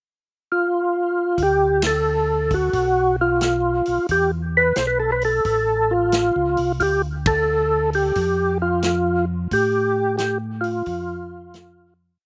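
A dry sound with little reverb frames this late-night, soulful soul jazz organ trio in D minor at 89 BPM with a swung 4/4 feel: an up-front, lightly overdriven percussive tonewheel organ, colored by chorus vibrato, a slow rotary speaker and slapback echo, states hooky motif phrases from 0.5 seconds. At 1.4 seconds it is joined by a round, dark tonewheel organ bass with key click and slow rotary playing a two-feel line, and by a vintage acoustic kit with a punchy kick, rolled-off top, stick backbeat and hi-hat time, with the band landing accents before a fade-out from 9.5 seconds.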